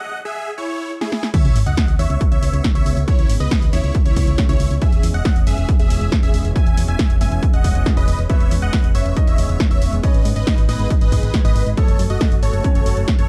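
A straight pulse drives this driving, soaring slice of uplifting trance. A layered techno kit with a punchy snare, hi-hat and crash plays a short fill that leads into the drop at 1.3 seconds, where a heavy, overdriven electronic kick arrives up front. There a background sub drop lands as the impact, and a round, dark FM bass takes hold under a euphoric, detuned supersaw lead that carries the melody with phaser, delay and sidechain pumping. A catchy plucky unison lead adds a second line in the background, while a lush, thick unison pad sustains the chords through chorus, moving from C#m7 toward G#m and F#m. From 8.3 seconds a grand piano with short sustain joins softly behind, wrapped in dub echo, within a dark, dry production.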